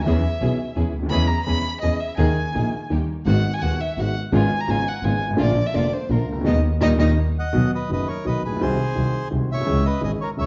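A nostalgic, playful tango in G# minor at 169 BPM in a rubato 3/4 opens with a warm, bowed violin solo full of vibrato and portamento over woody upright piano, a dark bowed double bass and veiled, muted string stabs in the background, all in a large, dark-sounding room, before a band accent near 6.5 seconds hands the melody at 7.4 seconds to a reedy, close-miked bandoneon for the final seconds of this cut from a longer piece.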